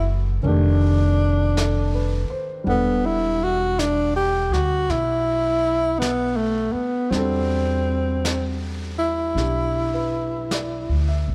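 A breathy, close-miked tenor saxophone carries the melody up front with mellow vibrato and a soft, whispered attack in this smoky, intimate jazz ballad excerpt in E minor, moving slowly at 54 BPM in 4/4 with a gentle swing. A warm grand piano accompanies as the chords move from F13 to Em11, while a woody, thumpy pizzicato upright bass on gut strings sits prominently underneath. A vintage brush kit of snare and hi-hat joins at 0.5 seconds from a small room, its top end rolled off, and light reverb surrounds the group.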